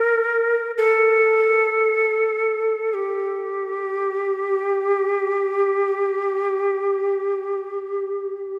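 A breathy, end-blown bamboo shakuhachi plays alone and up front for the whole 8.6-second excerpt of this still, solitary traditional Japanese piece, its tongued notes carrying a chiff and vibrato between G4 and Bb4, with a wet, cathedral-like reverb that places it in a church or concert hall.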